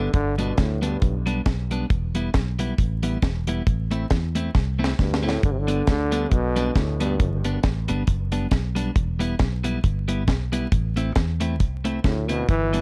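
A dark, warm production with vinyl crackle and light reverb frames this bouncy, joyful ska excerpt, cut from a longer piece and carried on a gently swung eighth-note feel. The deep reggae drum kit sits up front, dry, warm and acoustic, with a tight kick, a high-tuned snare and a rolled-off top, and it fires off a drum fill at 4.6 seconds. Beneath it, a fingered electric bass gives a round, foam-muted low end, dark and up front, while a clean, picked electric guitar supplies compressed accompaniment bathed in spring reverb. The warm trombone takes the solo melody in short phrases, returning at 5.0 seconds, its punchy, smooth-topped pop tone shaded with vibrato and trailed by dub echo and plate reverb. The harmony cycles through G, Em and Am, keeping the whole passage light and buoyant.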